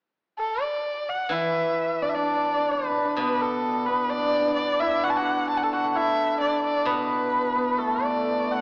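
Chinese traditional music for a small chamber ensemble, this short cut from a longer piece feels pastoral and festive, moving in a loose, rubato two-beat pulse. A dark, woody erhu carries the melody from 0.4 seconds, bowed by a single player with vibrato and portamento, its smooth top sitting up front. At 1.3 seconds the hammered dulcimer enters with a mellow, shimmering second line beneath it, while a steel-string zither, played with fingerpicks, adds low, silvery accompaniment with a ringing, gentle glow. The parts share a moderate concert hall reverb, yet the whole is filtered through a thin AM radio sound that gives it a distant, broadcast character.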